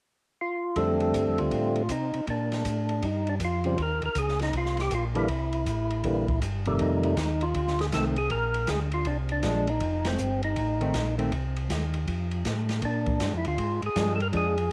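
A home cassette recording with light reverb captures this greasy, soulful soul jazz organ trio, cut from a longer piece, where a fat, lightly overdriven percussive organ turning through a slow rotary speaker carries the swung melody over a smooth, clean organ bass with chorus vibrato and key click, an airy acoustic drum kit with dark cymbals and a boomy kick, and a dark, clean hollow-body guitar that adds accompaniment from 7.9 seconds, with a band accent landing at 10.0 seconds.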